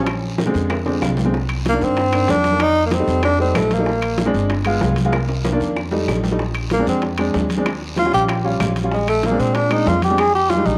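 A moderate spring reverb gives this studio recording a roomy glow, with a warm, close-miked tenor saxophone and a growly, steel-strung pizzicato upright bass placed up front. It is a sophisticated, lively Afro-Cuban jazz piece at 190 BPM in 4/4 with a straight feel, set in Bb mixolydian and cut from a longer performance. The saxophone carries the melody with vibrato, soft attacks and scooped notes, pausing at 4.4 seconds and returning at 6.7 seconds for a solo over chords that move from Bb7 through Eb7 to Fm7. A slightly detuned, woody upright piano with short sustain accompanies throughout and adds a brief fill near the start, while the bass anchors the low end. Behind them sit ringing congas, round, low-tuned bongos, metal-shell timbales and dry claves, with a raspy guiro adding texture and drum fills marking the turns between phrases.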